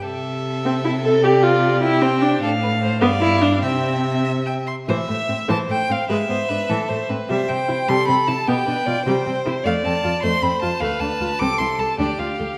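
Bathed in wet recital-hall reverb, this spirited, lively passage from a quick classical-period string-quartet movement in 6/8 at 101 BPM, played with rubato, moves from C major into A minor at 4.9 s, as a smooth, vibrato-rich bowed violin carries the melody over an even second violin line, a distant viola fills in the accompaniment from 0.7 s, and a focused cello sits up front on the bass.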